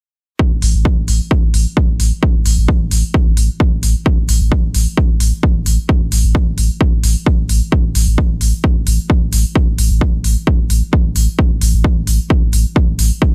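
Driving peak-time techno with a relentless, hypnotic mood, this excerpt pairs a heavy, overdriven electronic kick drum set up front with a deep, thick saturated sub bass around A1 that pumps under sidechain and sits behind a low-pass filter, while smooth, layered electronic hi-hats, also overdriven and pumping, ride on top in a dry room from 0.6 seconds onward.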